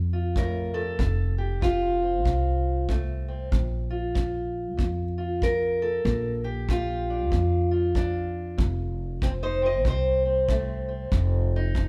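This short excerpt opens with a fingerpicked steel-string acoustic guitar and an upright bass sounding together, with a kick drum joining at 0.4 s. It is laid-back, swaggering acoustic country blues at 95 BPM in 4/4, with swing on the eighth notes and a mixolydian flavor centered on F. The parlour-style guitar carries the melody up front with a dark, boxy tone, while the pizzicato upright bass is also up front, woody, warm and thumpy on its steel strings. The kick drum is tight and played with brushes, adding a small-room pulse beneath them. The harmony moves between F and Bb, and the trio plays live in one room, bathed in a moderate large-studio reverb.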